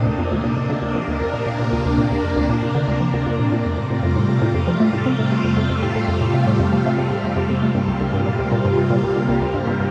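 A swirling, vintage string machine holds bright, up-front chords with ensemble chorus and phaser, while a juicy, squelchy blip pluck with a sub octave plays a riff through phaser and delay. This mysterious, cosmic piece of sequencer-driven space music moves at 117 BPM in a straight 4/4 over Bb, Fadd9 and Gm7/C, tuned to A4 = 441 Hz. A very quiet, soft, round pluck adds arpeggios from 0.1 seconds under a filter sweep, all set in a shimmering reverb with an 8.9-second tail in this excerpt from a longer piece.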